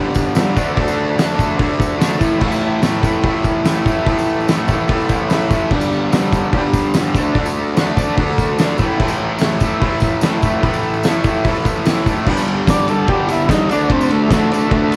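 A distorted, double-tracked fuzz guitar riff opens this rowdy, raw garage rock cut in A mixolydian at 146 BPM, with a buzzy, heavily vibratoed vintage combo organ holding overdriven chords and a jingly tambourine tucked behind. A huge, low-tuned drum kit lands at 0.2 seconds, dark and saturated with a fat snare and punchy kick in a stone room, pushing the G, D and A changes up front with the guitar under cassette-tape grit. After brief organ fills, the piece moves into a new section at 12.3 seconds, where the organ takes a buzzy, overdriven solo melody over the home-recorded, lightly reverberant mix.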